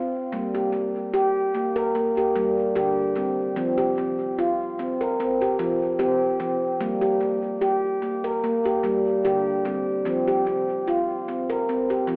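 A hazy, telephone-narrow sound sits inside a wet church reverb, giving this short excerpt of hypnotic world meditation music a cavernous air. A solo handpan of nitrided steel, struck with soft fingertips, carries everything up front in a mellow, ringing voice ranging from D3 to Bb4, its notes trailing into a diffuse ambient delay. The harmony sways between G minor and F5 in a lightly swung 4/4, holding a calm, meditative mood from start to finish.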